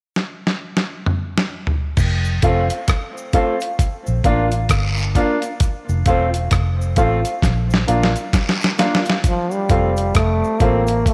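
Uplifting, laid-back roots reggae at 66 BPM in F major, where a gritty, compressed sampler-style drum kit with a thumpy kick opens with a fill at 0.2 seconds, a round, foam-muted electric bass with tube saturation and a background layer of cabasa and guiro join at 2.0 seconds, followed at 2.4 seconds by a clean, fingered electric guitar with tape echo and woody, boxy upright piano stabs, and a breathy, intimate trombone carries the melody with light vibrato and tape echo from 9.3 seconds, all set in a moderate echo chamber reverb in this excerpt from a longer piece.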